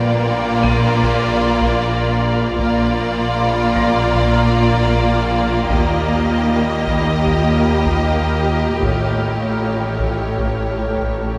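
In a straight 4/4 pulse, this eerie, ominous suspense film cue, cut from a longer piece, layers close, vibrato-laden violin sections carrying the melody and a second line over lush background violas, a very quiet cello section and woody double basses, while a distant, dark high violin texture and a boxy grand piano that is barely audible hover at the edges. A detuned analog drone with ring modulation enters at 0.3 seconds, a shimmering, ethereal pad with octave-up shimmer sustains chords throughout, and compressed, saturated taiko drums played with heavy sticks join at 0.6 seconds. The harmony moves from Bb to Eb to a closing A7 at 8.8 seconds, all sunk into a vast, echoing space with a huge reverb tail.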